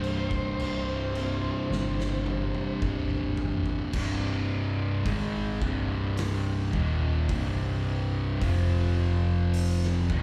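A slow, straight 4/4 crawl at 54 BPM in C minor drives this sludgy, heavy stoner and doom metal excerpt, heard as a live gig through the venue's PA with club reverb, where a growly, punchy overdriven picked electric bass sits up front beneath a bright, double-tracked raw garage guitar and two warm thick fuzz guitars in the background grinding the riff, an oversized low-tuned drum kit with a fat snare, punchy kick and dark cymbals in a bright stone room plays a fill from 1.7 to 3.9 seconds, and a dark, compressed fuzz lead guitar with wah, slapback echo and analog delay sounds its melody only until 2.8 seconds.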